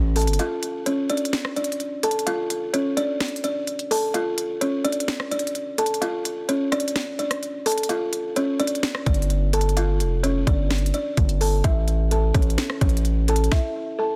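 A buzzing kalimba carries the melody throughout this menacing, melancholic trap excerpt, its woody, thumbnail-plucked notes kept dark and smooth by a low-pass filter and trailed by delay. The beat moves at 128 BPM in a half-time 4/4 feel, set in D harmonic minor with tuning at A4 = 439 Hz, and the harmony travels from D minor to a G power chord and then to A major. An electronic trap kit sits up front with a hard-clipped kick, sharp snare, crisp hi-hats and rim clicks, though the kick drops out briefly before the final stretch. A distorted 808-style bass, heavy and saturated with a noise layer, sounds only briefly at the start, stays out through the break, and returns at 9.1 s to add aggressive low weight. The bass and drums stop just before the close, leaving the kalimba alone until 14.2 s. The mix is dry, dense and heavily limited, and the clip is cut from a longer piece.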